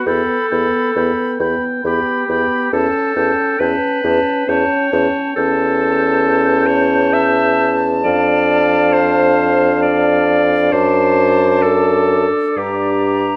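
Classical slow romantic movement for wind quintet, melancholic and elegiac, moving in a rubato 3/4 at 67 BPM and settling into D minor from 5.4 s, with a pure, softly attacked silver concert flute carrying the melody over a distant oboe second line with light vibrato, a bright, smooth-topped clarinet up front and a mellow, roomy French horn in the accompaniment, and a warm bassoon bass entering at 0.1 s, heard in a moderate recital hall reverb through close, detailed microphones in this short cut from a longer piece.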